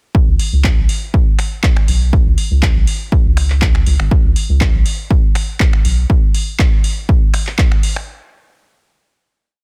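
A dry, punchy four-on-the-floor electronic kick drives this short, gritty acid house piece at 121 BPM, joined at 0.3 s by a round, nasal analog bass playing a dark syncopated riff with sidechain pumping, while a booming analog drum machine enters at 0.4 s with finger snaps, handclaps and metallic open hi-hats in a programmed backbeat, set in a dense, heavily limited modern master with little reverb.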